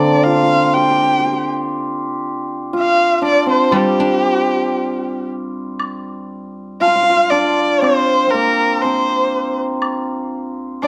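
Chinese traditional chamber music with a wistful, tender mood, cut from a longer piece and played with a free rubato feel in 2/4. An expressive, up-front erhu carries the melody with vibrato and portamento, joined by a bright, shimmering hammered dulcimer on a ringing second line, while a mellow, silvery guzheng played with fingerpicks accompanies until 6.8 s and an acoustic woodblock with a small-room sound enters at 5.8 s. Close, detailed microphones capture the ensemble in moderate recital hall reverb, with a faint mains hum beneath.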